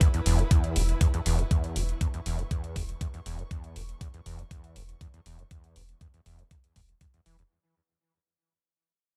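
A squelchy, gritty sawtooth acid bass riff opens this raw, hypnotic acid house excerpt at 120 BPM in straight 4/4 on an E5 chord, its resonant filter sweep coloured by distortion, tube saturation, subtle chorus and analog delay, over an up-front, thumpy, tape-coloured kick and metallic analog hi-hats. A close, bowed studio string ensemble plays from the start, its vibrato and soft attack pumping with the sidechain low beneath the drums, and a deep, thick sine sub bass enters at 0.3 seconds, also with sidechain pumping. The strings and the dry mix fade out across the 7.5 seconds.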